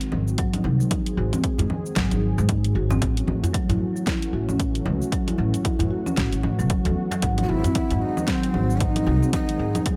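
The excerpt opens in a small, intimate room, with a close, dry djembe tucked in the background and a thumpy, woody upright bass sitting up front while a smooth, detuned analog pad glows softly behind them with chorus and sidechain pumping. This is meditative, mystical organic downtempo at 114 BPM in 4/4, with a 16th-note swing, set in G# phrygian dominant and tuned to A4 = 438 Hz, moving between G#7 and A6 chords. A punchy, overdriven electronic kick arrives at 0.4 seconds to join a layered deep house kit of congas, hi-hat, shaker and fat snare that has been playing from the start, while the pizzicato gut-string bass pumps beneath. A mellow, round marimba played with soft mallets on rosewood bars spins arpeggios roughened by vintage 12-bit sampler grit and digital delay. Near the end, a ringing bronze singing bowl with slow beating hums in the background from 7.2 seconds, and at 7.4 seconds a breathy, low wooden flute in Native American style enters with vibrato, chiff and an unsteady, close-miked tone, its melody trailing digital delay.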